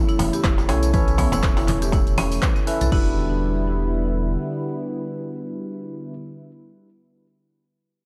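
A punchy, overdriven electronic kick drives this short cut from a longer afro house track at 121 BPM in 4/4, with a 16th-note swing that gives it an earthy, spiritual lilt in E dorian. Around it, a layered deep house kit of crash, handclaps, hi-hat and rim click sits in a small room, joined by low-tuned congas played with soft hands, a deep clay-shelled darbuka and a jingly tambourine tucked into the background. A round sine sub bass with tube saturation pumps beneath, while a woody marimba struck with hard mallets spins delayed arpeggios. A clean tine electric piano adds delayed stabs over a smooth, detuned sawtooth pad with chorus and a moving notch, both breathing with the sidechain. The opening drop over A/E gives way at 2.9 seconds to an Em7 section, where the drums and percussion fall away, the bass holds until 4.4 seconds, and the pad and electric piano carry on alone until 6.1 seconds in a dark, warm mix with light reverb.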